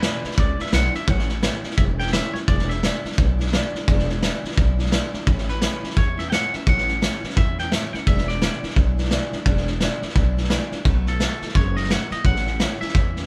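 Retro and rowdy, this swung 172 BPM rockabilly piece in E mixolydian features a twangy, clean electric guitar playing melody phrases that begin at 0.0, 5.5 and 11.1 seconds, backed by a bright, full-bodied picked steel-string acoustic guitar, a woody, thumpy pizzicato upright bass and a gritty, saturated vintage drum kit with a tight kick and rolled-off top sitting up front, all played live together in a moderate studio room over E7, A7 and B7 chords.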